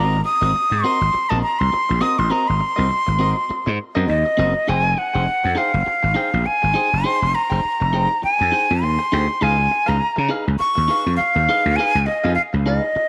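Set in a moderate echo chamber with a 2.2-second reverb tail, this funk excerpt has a gritty, strutting feel at 102 BPM in 4/4, with a light swing on the sixteenths. An overdriven slap bass sits up front, growly and punchy, carrying the low end from F1 to Db3. A breathy metal jazz flute, tongued and touched with vibrato, leads the melody between Eb5 and Eb6 and takes a solo turn through the opening section until 4.7 seconds. Beneath it, a clean, picked electric guitar with a compressed, twangy, scooped tone supplies quieter accompaniment in the middle register. The harmony moves from Ab9 to Fm9 at 4.7 seconds, as the piece shifts into its second section, and on to Db9 at 9.4 seconds, all three parts playing throughout.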